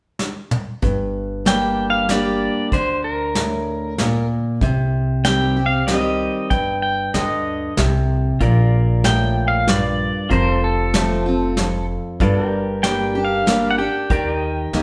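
A 3/4 waltz at 95 BPM, played straight, opens with a soft brush fill on the drum kit at 0.2 seconds before settling into a lonesome, brooding honky-tonk groove in G minor. This is a passage from a longer piece of classic country. The airy, polished kit sits up front with a punchy kick and a medium-tuned snare, joined by a full-bodied picked dreadnought acoustic guitar and a woody, thumpy pizzicato upright bass on gut strings. A clean, twangy pedal steel guitar takes the solo line from 1.5 seconds, played with fingerpicks, slide and volume swells, compressed and up front over the chords Gm, Cm, Bb, F and Eb. From 8.4 seconds a second pedal steel adds quieter sustained chords beneath it, and the whole band sounds as if playing live in one large studio room with a wet reverb.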